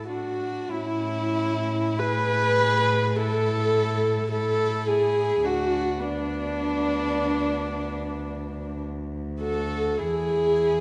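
Tender and warm, this slow romantic string quartet movement in A major drifts at 45-54 BPM with a rubato feel, cut from a longer piece and bathed in a concert hall's wet reverb. A dark, woody violin carries the melody with vibrato while a second violin adds an airy, sul tasto line, and the up-front viola's soft-attack accompaniment sits closest of all. Beneath them, a cello lays a smooth-topped bass through a harmony moving from A to Bm/D at 5.4 seconds and onto E at 10.0.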